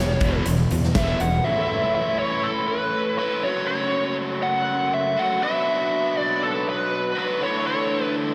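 A biting lead guitar, overdriven and run through wah, stands out in this swaggering, gritty classic rock excerpt, soloing up front over the opening 1.5 seconds and carrying the melody to the end. Beneath it, a raw garage guitar plays a bright, picked riff with spring reverb and slapback echo, while a tight distorted guitar adds a low riff from the background. A growly fuzz bass and a huge arena drum kit, with a punchy kick, a medium-tuned snare and hi-hat, drive the straight 4/4 opening, then stop with the tight guitar at about 1.4 seconds. From 1.5 seconds, a very quiet tonewheel organ holds shouting sustained chords with key click, chorus vibrato and a slow rotary speaker as the harmony moves from A through F#m and Bm to Dsus2. A lush hall reverb gives the mix a big arena sound.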